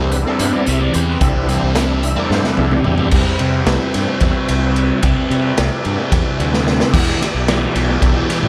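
Trippy and hypnotic, this short psychedelic rock excerpt, cut from a longer piece, drives along at 220 BPM in eighths, counted in an off-kilter 7/8 with a straight feel and a slightly sharp tuning reference of A4 = 441 Hz. A fuzz guitar, double-tracked, compressed and up front, carries the picked riff through distortion and a phaser, while a round, overdriven fingered electric bass underpins it in the low register. A full tonewheel organ holds sustained chords in the background, lightly overdriven and turning through a slow rotary speaker with chorus vibrato, and it takes a solo over the opening 3.1 seconds. A raw garage drum kit, gritty, saturated and pumping in its small room with a punchy kick, a medium-tuned snare and a rolled-off top, sits up front with tape echo on it, landing fills just before each new section. Beneath it all, a very quiet tanpura buzzes and shimmers as a bright, softly plucked drone. 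The harmony rests on Cmaj7 until it moves to Em7 at 6.9 seconds, and the whole mix is echo-heavy, set in a small room reverb.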